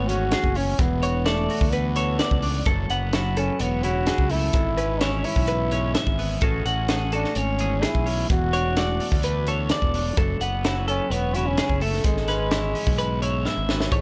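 A dry recording with little reverb opens this bright, intricate math rock and midwest emo excerpt at 128 BPM, where a clear, vintage-toned trombone carries the melody over two twangy, compressed twelve-string electric guitars, one playing accompaniment and the other picking arpeggios through analog delay. Beneath them, a dark, round fuzz bass with overdrive sits up front beside a crisp fusion kit with a high-tuned snare, tight kick and pumping small-room sound. The harmony cycles from A6 through E9sus4, F#m11, C#m7/G# and Amaj13, and a drum fill at 13.5 seconds closes the passage.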